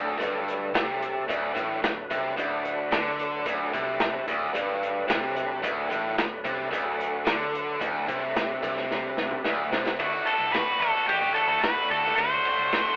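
Psychedelic rock at 110 BPM in a straight 4/4, this short cut from a longer piece sits in D mixolydian with a hazy, trippy mood. A biting, double-tracked overdriven guitar drives the riff up front, while a vintage drum kit with a punchy kick, medium-tuned snare, dark cymbals and a pumping small-room sound plays hi-hat, ride and toms, rolling into a fill from 8.9 to 10.0 seconds. Beneath them, a reedy tonewheel organ holds sustained chords in the background through a slow rotary speaker with chorus vibrato and audible key click, and a foam-muted fingered bass adds a round, dark low end, also set back in the mix. At 10.3 seconds an octave-fuzz lead guitar takes a short, distorted melody up front as the arrangement shifts into a new section. The whole band sounds played live in one room, colored by a telephone-like filtering and a moderate studio reverb.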